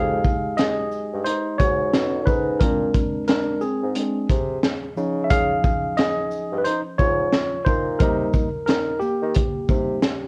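A worn, slightly out-of-tune tine electric piano opens this nocturnal, cool jazz-hop excerpt in F minor, taking the lead up front in a featured solo, joined at once by a mellow bassoon carrying the bass line with light vibrato in a distant, roomy, classical style. At 0.2 seconds a crunchy breakbeat kit enters with hi-hat, kick, shaker and a high-tuned snare, its acoustic sound dark, gritty and saturated, with a tight kick and a rolled-off top sitting up front. The groove moves at 89 BPM in 4/4 with a lazy swing on the sixteenths. Harmony drifts from Fm7 through B9 and Bb9 to Dbadd9, settling on Cm7 near 8.0 seconds. A small room reverb adds moderate space, and the whole mix carries the warble and pitch drift of old cassette tape, giving it a hazy, late-night character.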